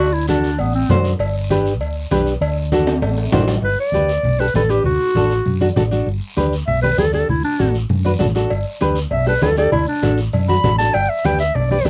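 Cumbia in a joyful, danceable mood, moving at a quick 197 BPM in 4/4 with a straight feel in G major, heard as a short cut from a longer piece. A growling clarinet carries the melody up front, raspy and gritty with a smooth top and light vibrato in a jazz style, sounding briefly at the opening before returning at 3.6 seconds for a solo that runs to the end. Beneath it, a round, dark hollow-body electric bass holds the low end throughout, while a full-bodied nylon-string guitar is fingerpicked close to the ear, its finger squeaks audible. Soft-handed, low-tuned congas sit in the background, a raspy guiro scrapes faintly, and ringing cowbell and timbales play until 3.5 seconds as a drum fill closes the opening section at 3.6 seconds, then return at 8.5 seconds. The chords move between D7, G and D, and the whole recording has a worn, warbling old-cassette character with pitch drift and little reverb.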